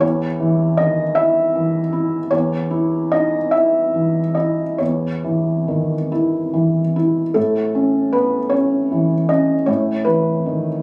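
Rubato in 6/8 at roughly 45-54 BPM, counted in dotted quarters, this short reflective, melancholic fragment of neoclassical minimalist piano sits on an E5 chord before moving to A at 7.4 s, where the opening idea returns. A felt-muted upright piano plays alone from 0.0 to 10.8 s, ranging from E2 to E5, its soft, mellow, intimate, natural tone placed up front and tuned to A4 = 438 Hz. Light reverb and compression frame it, while a phone recording in the room catches the club ambience around the instrument.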